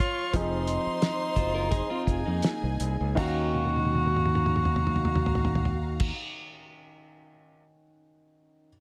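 A cloth-damped, thuddy drum kit with a fat snare and dark cymbals sets a swung 4/4 groove at 80-90 BPM, easing into a slowdown over the first 3.2 seconds before a drum fill runs from 3.5 to 6.0 seconds, while a bright, punchy fingered electric bass sits up front. In this cinematic, silky cut of lush 1970s-style soul in Eb dorian, a breathy, whispered tenor saxophone carries the intimate melody with vibrato and scooped notes, joined by a smooth, bowed studio violin section, a clean picked electric guitar riff and a warm baby grand piano in the background. The harmony moves from Fm7 to Ebm9 inside a small room ambience.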